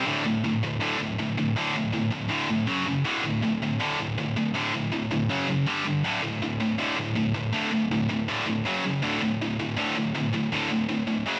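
A heavy high-gain electric guitar carries this short metal excerpt entirely alone, its distorted, double-tracked tone sitting up front with a bright, cutting edge. The playing is picked at a driving 161 BPM in straight 4/4, with a dark, relentless mood in D major. Power chords circle around D5, moving to F#5 at 2.7 seconds and touching G5 at 5.7 seconds before settling back on D5. The guitar stays in a low register between D2 and G3, giving the riff a weighty, grinding body. A light reverb adds a touch of digital ambience around the sound, and the clip is cut from a longer piece, ending at 11.4 seconds.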